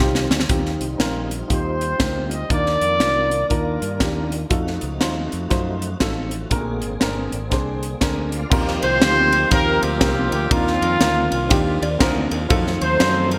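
Soulful and reverent, this uptempo gospel excerpt moves at 120 BPM in 4/4 with a swung eighth-note feel, its chords drifting from Eb69 through Cm11, F7b9 and Bb9. A crisp fusion drum kit sits up front with a high-tuned snare, punchy kick, hi-hat, ride and crash under gated reverb, opening with a short fill, while a bright, direct fingered electric bass holds the low end. A dark, woody upright piano, slightly detuned and intimate with audible action noise, supplies accompaniment beside a full, lightly overdriven tonewheel organ that sustains chords in the background through a slow rotary speaker and chorus vibrato, adding its own fill just before the second section at 8.5 seconds. A smooth-topped horn section with light vibrato and delay carries the melody up front in two phrases, the second beginning at 8.8 seconds. Near the close, a clean, compressed electric guitar with ensemble chorus adds a brief fingered second line in the background at 11.8 seconds. 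The whole sits in a moderate plate reverb with a bright 1980s-style digital production sheen.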